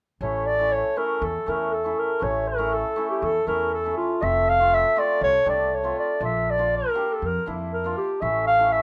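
A rough home-demo mix with moderate studio ambience frames this short klezmer fragment, bittersweet yet festive in a straight four. A dark, roomy clarinet sits up front carrying the melody in a classical style, while a shimmering, ringing hammered dulcimer accompanies and a woody pizzicato upright bass on steel strings holds the low end, all three playing from 0.2 to 8.8 seconds. The harmony moves from A to F, then to Bb, and returns to A at 8.2 seconds.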